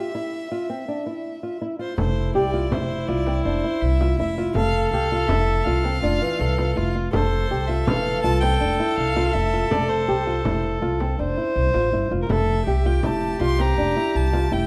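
Contemporary instrumental chamber music in a playful, shimmering 7/4 at 163 BPM in F major, opening with a nasal, lightly vibrato violin melody over thumb-plucked flamenco guitar arpeggios, until at 2.0 s a soft, airy sul tasto viola adds a floating second line, a woody, thumpy pizzicato upright bass on gut strings steps up front, and a small, bright frame drum sits in the background, all within a moderate scoring-stage reverb and a dark, warm production that frame this fragment of a longer piece.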